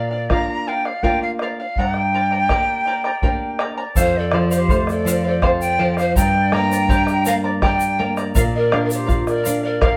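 A breathy, reedy quena carries the wistful, melancholic melody of this Andean folk piece, its crisp, chiffy attack and vibrato sounding bright but set at a distance. Beneath it, a fingerpicked charango shimmers on double strings, some doubled at the octave, while a boxy, up-front flamenco guitar fingerpicks the lower accompaniment, with audible finger squeak. A deep, dark bombo enters at 0.3 s and marks the 3/4 pulse at 82 BPM in G minor, as the harmony moves through Bb, Gm and F. At 4.0 s a mellow, polished pan flute joins as a second line, soft in attack and slightly unsteady, alongside a grainy, close egg shaker. The ensemble sounds like a band playing live in one room, wrapped in a wet studio reverb, and the passage is cut from a longer piece.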